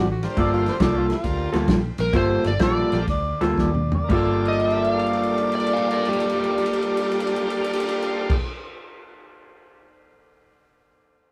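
A growling, raspy tenor saxophone opens this mournful, smoky electric blues shuffle in G minor, joined from the start by a slightly broken-up electric guitar riff through a small old amp and a round, foam-muted fingered electric bass. Moments later a full, shouting tonewheel organ with key click, overdrive and a slow rotary speaker settles in on a Gm9 chord, while a soul drum kit with dark cymbals, a punchy kick and a medium-tuned snare carries the swung 4/4 feel. The tempo sits between 112 and 140 BPM and slows through the opening seconds, with drum fills rounding out that first stretch and running through much of the second. At 2.0 seconds an overdriven slide guitar enters up front with a second line above the breathy saxophone melody. The lo-fi, compressed picked guitar stays prominent in a rough rehearsal-room recording with a moderate small-room reverb. The drums ring on alone until 9.8 seconds in this fragment cut from a longer piece.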